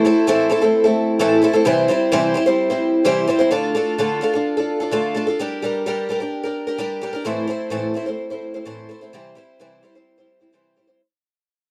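A straight 4/4 pulse at 129 BPM carries this short, wistful rock fragment in D minor, played by a lone picked twelve-string acoustic guitar that sits up front, spanning A2 to C5. Its octave-doubled strings shimmer with a woody, slightly boxy tone and the dusty character of old strings, moving from Am and C into Dm, Gm, Am and C again. The dry, close 1970s-style studio sound carries a light touch of reverb, and the guitar fades out from 3.5 s to 11.0 s.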